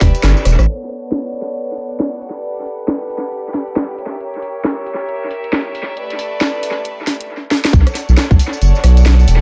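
A thick, saturated sub bass grounds this late-night, soulful two-step garage clip, dropping out after a brief opening and returning with a tight, overdriven electronic kick at the drop at 7.7 seconds, while a cracking, up-front garage kit of snare, hi-hat, rim click, tambourine and crash, treated with dub echo, swings through a filter sweep beneath a clear, close violin section whose bowed sustained chords carry light vibrato and a sidechain pump in an echo-heavy mix.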